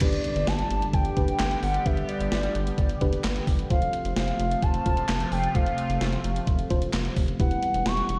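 A gated 80s digital drum machine sits up front in this nostalgic, upbeat synth-pop excerpt, its thumpy kick, gated-reverb snare, handclaps, hi-hat and crash cymbal sounding as if re-recorded in a large room. Beneath it, a rubbery square-wave bass bounces in the low register with a dark, plucky filter, while a mellow FM electric piano adds soft, round accompaniment with a chorus sheen. A sweeping resonant pad built from detuned sawtooth layers evolves through a filter swell across G, F and Emadd9, its tone bright. Over the top, a hollow, woody clarinet-like synth lead carries the melody with gentle vibrato, chorus and delay. A very quiet electronic impact marks the opening until 1.9 seconds, and the mix comes across as if played on a big sound system in a bare stone room.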